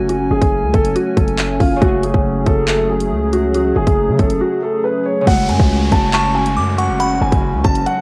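A home cassette recording with light digital ambience carries this dark, ominous half-time drill excerpt at 139 BPM in F# minor, where a mellow, up-front baby grand piano sings the melody over fingerpicked Celtic harp, a hollow, flute-like pad with chorus, a punchy sine 808 bass and a drill kit of hard-clipped kick, handclaps, hi-hat and crash, before a downlifter arrives at 5.3 seconds and a tinkling FM tine bell with analog delay enters at 6.1 seconds.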